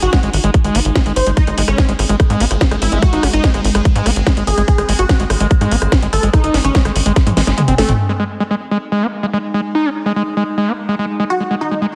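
A heavily compressed, radio-like sound with light digital ambience frames this intense, hypnotic psychedelic trance passage, cut from a longer piece and moving in a straight four-four pulse. An up-front electronic kick drives it alongside a techno kit of cracking snare, metallic hats, rim click and toms that sounds re-recorded in a small room, while a tight, punchy sequencer bass with a wave-folded filter pluck drives the low end. A screaming, squelchy acid line runs nearly the whole length from 0.1 seconds, distorted and resonant with a filter sweep, chorus, cassette tape colour and dub echo. Above it, a detuned supersaw stab carries the melody through a phaser and digital delay, returning briefly at 11.3 seconds, as an evolving, morphing wavetable pad glows in the background with a phaser and reverb. A drum fill closes the first section at 7.2 seconds, the kick dropping out just before the drums and bass stop at 8.0 seconds, leaving the pumping acid line and pad in a sparser final stretch.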